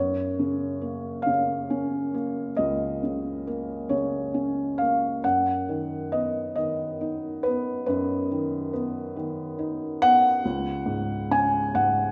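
Classical solo piano in a lyrical, calm and peaceful vein, this short excerpt from a longer piece unfolds in 6/8 with gentle rubato. A felt-muted upright piano plays alone throughout, its soft, mellow, intimate tone sitting up front and spanning low bass to the upper middle register, moving from F#maj7 to B/F# and settling on C#sus4 at 10.4 seconds. A wet recital-hall reverb surrounds the close, thick-felt sound with a lingering sense of space.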